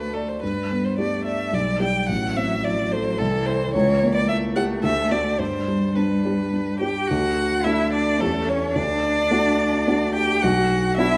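Quick, spirited classical-period piano trio movement in 3/4 at 108 BPM, cut from a longer piece, in which a focused, up-front violin carries the melody with vibrato while a distant, expressive cello sings a second line with vibrato and portamento (both strings rich and bowed), over a dark, mellow baby grand piano accompaniment with long sustain, all in a moderate recital hall reverb as the music moves from G major to D major at 7.1 seconds.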